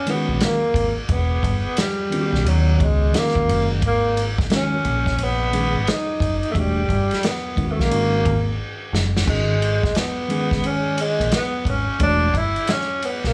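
Smoky, cool jazz-hop excerpt with a swung groove, led by a breathy, intimate tenor saxophone whose subtone, vibrato and scooped notes drift over a worn, slightly out-of-tune electric piano with light overdrive, a round, dark fingered electric bass, and an up-front vintage drum kit with a punchy kick and dark cymbals that plays a short fill at 8.6 seconds, all set in a small room.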